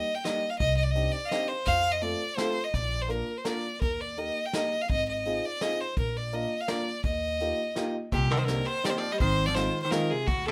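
A brisk 168 BPM waltz in 3/4 with a straight feel drives this nostalgic, whirling musette piece in Eb major, cut from a longer work. Up front, a single bowed violin carries the melody with an intense, biting tone, airy bowing and vibrato, over woody upright piano accompaniment, thumpy pizzicato upright bass on gut strings, and a distant, roomy brush kit with a punchy kick. At 8.1 seconds, as the harmony moves to Cm7, a dark, clean hollow-body archtop guitar, picked and amplified, adds a second line, with light reverb around the ensemble.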